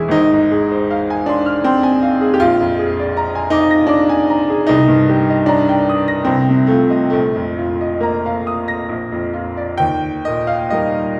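In a rubato 3/4 that drifts between 65 and 82 BPM, this serene, dreamy romantic nocturne for solo piano unfolds as a brief fragment cut from a longer piece, tuned to A4 = 438 Hz. The brilliant, up-front baby grand spans Ab1 to Bb6 with a long natural sustain, moving from Fm/Ab through Bb7, Cm7 and a suspended Bbsus4 before resolving to Eb as a new section opens at 9.8 s. A wet recital-hall reverb places the listener further back in the room, wrapping the instrument in a 1.7-second decay.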